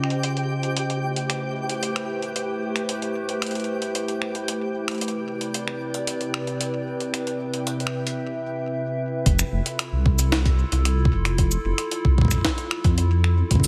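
Heard through a moderate echo-chamber reverb, this glitchy, intricate IDM fragment at 113 BPM in F lydian sets a warbling, nostalgic tape-like pad on sustained chords over a gritty, pitched-up jungle sampler kit of cabasa, finger snaps, filtered hi-hat and a high-tuned snare, with a twinkling granular shimmer that drops out at 8.2 seconds before an up-front, rumbling, detuned saw bass and a thumpy electronic kick arrive at 9.3 seconds.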